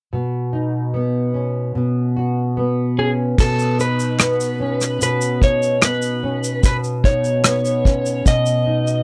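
Easy-going and carefree, this acoustic pop excerpt opens on a double-tracked nylon-string guitar, full-bodied and thumb-plucked with a touch of finger squeak, sounding a Badd9 chord. At 3.0 seconds a slightly broken-up, compressed electric slide guitar takes the melody, and at 3.4 seconds an unplugged drum kit played with bundle sticks joins with a punchy kick, rim click, shaker and a dark crash cymbal. A crisp, very quiet group handclap appears briefly from 4.2 seconds, all captured in a dry, close 1970s-style studio sound.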